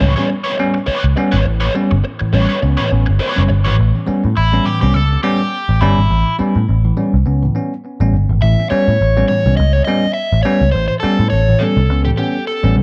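A gritty funk groove in A mixolydian opens on an A9 chord, with a punchy, foam-muted bass up front, a bell-like tine electric piano playing clean stabs through tape echo, and a crunchy guitar accompaniment run through wah and spring reverb. At 103 BPM with a light sixteenth-note swing, the music moves into a new section at 3.8 s, where an overdriven electric guitar solo takes the lead until the cut at 12.8 s. The dark production sits in a moderate club reverb, lending this fragment of a longer piece a vintage, funky feel.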